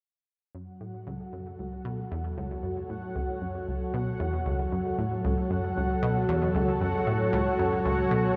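Ambient at 115 BPM in 4/4, hypnotic and mysterious, this short cut from a longer piece rests on a single F#m chord in a vast, echoing cathedral-like space. A lush, warbling unison pad holds thick sustained chords with chorus while a round, detuned analog pluck plays a low riff through chorus and analog delay, both fading in from 0.5 seconds and sitting up front. From 0.9 seconds a quieter, bubbling texture of resonant, randomly stepped filter moves joins higher up, its chorus and shimmer reverb adding to the haze.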